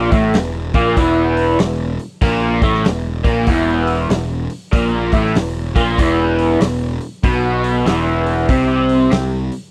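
Blues rock in a power-trio, southern rock vein, this heavy, smoky excerpt moves at 96 BPM in 4/4 with a swung eighth-note feel, tuned slightly below standard pitch. A raw garage guitar drives the riff over an E5 power chord from the start, its overdriven, lo-fi tone double-tracked, up front and colored by a phaser. Beneath it, a fuzz-toned picked electric bass sits up front in the mix, bright and overdriven, coming through direct and amped in the low register. The acoustic drum kit of hi-hat, kick and snare enters at 0.1 seconds, with a punchy kick, a medium-tuned snare and a dark, smooth, rolled-off top set in a bright stone room. Around 8.5 seconds the chord drops away, and the whole trio falls silent by about 9.6 seconds, captured as a dry, close recording in 1970s studio style.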